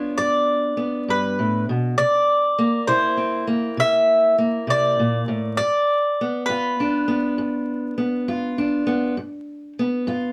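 A slow 12/8 pulse at 66 BPM in dotted quarters carries this swaggering, gritty acoustic country blues excerpt in G mixolydian, tuned slightly flat at A4 = 439 Hz, moving from G7 to C7 at 2.0 seconds and back to G7 at 5.6 seconds. Up front, a picked mandolin sings the melody with a round, double-string tone until 8.8 seconds, while a dark, boxy parlour steel-string guitar fingerpicks the accompaniment through to 10.3 seconds. A small room's moderate reverb and a layer of vinyl crackle give the duo an intimate, aged character.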